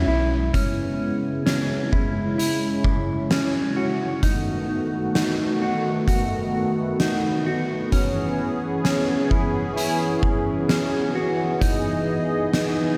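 A straight, unhurried 4/4 pulse from an oversized, low-tuned acoustic drum kit with a fat snare, punchy kick and gritty, pumping room sound enters at 0.5 s, just as a round, deep analog bass note ends, beneath a smooth detuned sawtooth pad holding chorused chords and a dark, clean electric guitar playing fingered arpeggios through lush chorus, tape echo and slapback echo, all set in a long hall reverb and big arena sound that give this hazy dream pop excerpt, moving from C#m7 through B7 to Emaj7, a haunting glow.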